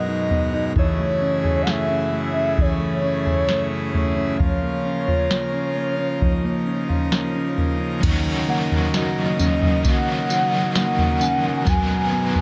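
An up-front vintage rhythm box with a deep kick and tonal snare anchors this ethereal, floating dream pop excerpt at 66 BPM in F# major, beneath a velvety, chorused synth lead melody, majestic full pipe organ chords with a brilliant chiff, and dark, clean fingered electric guitar arpeggios with subtle chorus and delay, before a double-tracked overdriven guitar with tremolo enters at 8.0 seconds and a very quiet, slightly out-of-tune celesta adds delicate bell-like touches from 8.5 seconds, all in light reverb.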